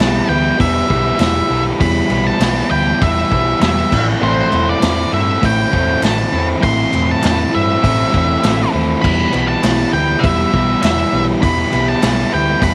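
Swaggering and gritty, this short garage rock cut from a longer piece struts at 100 BPM in a straight 4/4, sitting in A minor with chords moving from Em to Am and back to Em at 9.0 seconds. An overdriven, double-tracked electric guitar carries the riff up front, while a dark octave-fuzz lead guitar plays the melody in a higher register above it. Underneath, a round, punchy hollow-body short-scale bass, picked and amped with overdrive, anchors the low end. A vintage acoustic drum kit with a punchy kick, medium-tuned snare, hi-hat, crash and dark cymbals has a rolled-off top and a mid-forward presence. A very quiet group handclap, hollow and distant in a large room, joins at 1.2 seconds and stops at 12.2 seconds, all set in a small room ambience.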